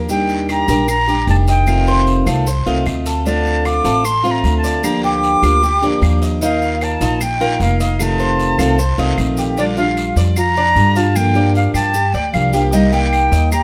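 Relaxed and danceable, this fragment of a longer Cuban son and guajira piece moves at 152 BPM in a straight 4/4, set in B-flat major with tuning slightly above standard pitch. A bright, picked steel-string acoustic guitar sits up front with audible finger squeak, while the Cuban tres spins metallic arpeggios on its doubled strings, some of them octave-doubled. The upright bass is also up front, plucked pizzicato with a woody, steel-strung tone. From 0.1 s a jazz flute carries the melody, its airy, distant voice carrying vibrato, a crisp attack and a little chiff. Raspy guiro and grainy, mellow maracas stay in the background, joined at 0.5 s by close claves. The chords move from Ebmaj7 and F7 through Dm7 and Gm7/D, then shift at 9.6 s into a new section on Bb6, Gm7 and Cm7, all in a moderate studio reverb.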